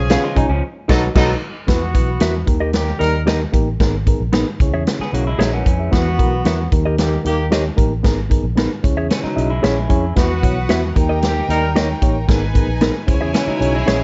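A straight 4/4 groove at 113 BPM drives this passionate, uptempo 1960s-style soul passage, with a punchy, up-front big-band drum kit with dark cymbals and a round, foam-muted fingered bass anchoring chords that cycle from Esus2 through D# and G#madd9 to C#m. A reedy electric piano heard through its built-in speakers comps throughout and takes a fill at 9.1 seconds, while a clean, compressed electric guitar plays stabs and a slightly broken-up, lo-fi guitar through a small old amp adds brief riffs. A warm horn section with light vibrato carries a second line until 11.7 seconds, a biting, bowed violin section returns at 10.2 seconds, and the mix sits in a small room with light reverb and a subdued top end.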